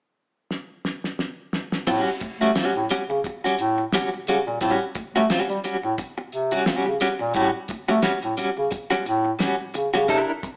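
A warm bass clarinet sits up front, carrying the low end of this playful, gritty funk excerpt in a classical-style voice that ranges from A2 to C4. It moves at 88 BPM in 4/4 with a light swing on the sixteenths, in A mixolydian, and settles on an A6 chord from 1.9 seconds. The cloth-damped drum kit opens the cut with a fill from 0.5 seconds, its thuddy, dry sound marked by a fat snare, tight kick and dark cymbals across crash, hi-hat, kick and snare. At 1.9 seconds the bass clarinet and a clean electric guitar enter together. The guitar is picked and compressed, with tremolo, and stays up front between G3 and Bb4. The band plays live in one room with moderate large-studio reverb, giving the whole a small-speaker character.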